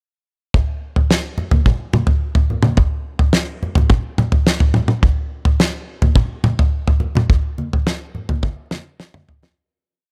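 A straight 4/4 rock groove at 106 BPM sets a dark, mysterious mood in this short piece: a dry, damped 70s drum kit sits up front with a fat snare, a tight kick and a tom groove, low-tuned thick-skinned congas join in the background at 1.4 seconds with a loose pattern in a small room, and the whole piece fades out from 7.3 seconds as the drums close with a fill at 8.4 seconds.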